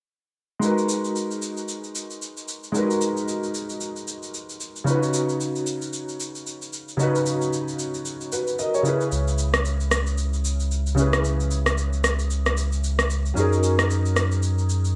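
A soulful, deep amapiano piece in G# minor at 113 BPM, cut from a longer track, opens at 0.6 s with a concert grand piano moving through G#m7, C#9sus4, C#m7 and F#6. The piano's mellow, short-sustained tone and heavy low end are thickened by ensemble chorus, alongside an overdriven electronic shaker and rim click with gated reverb and small-room grit, both up front over a swung sixteenth feel. At 9.1 s a round, sine-like sub bass arrives with a fast attack and sustained notes, all set in a wet plate reverb and digital ambience with a bright 1980s-style digital sheen.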